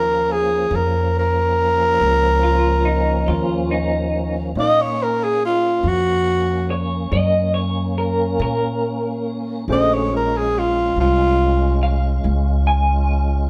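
A slow, straight 12/8 lilt carries this mournful, soulful blues fragment, cut from a longer piece. Up front, a growling tenor saxophone takes the jazz-style solo melody with a raspy, breathy tone and scooped notes, falling silent at 11.8 s. A twangy electric guitar through a small old amp, slightly broken-up and shimmering with tremolo, enters at 2.4 s with a picked second line that sits bright and up front. Underneath, a woody pizzicato upright bass anchors the low end up front, while a lightly overdriven tonewheel organ holds full, sustained chords through a slow rotary speaker and chorus vibrato. A dark, mellow upright piano with short sustain accompanies from the background. The band plays live in one room with a moderate stone-room reverb, and the harmony rests on Ebm9 before moving to Bbm9 at 9.7 s.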